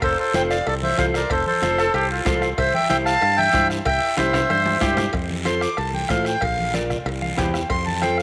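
A reedy, up-front accordion leads this sunny, festive cumbia excerpt and takes a solo from 5.1 s. Beneath it are a growly, punchy fingered electric bass, a dark, clean mellow electric guitar bathed in spring reverb with a brief fill at 7.1 s, and two short smooth-topped lines from a warm trumpet with vibrato. A percussion bed has soft-beater bombo and thick-skinned congas in the background, very quiet ringing cowbell and timbales, and raspy guiro, with a drum fill leading into the solo.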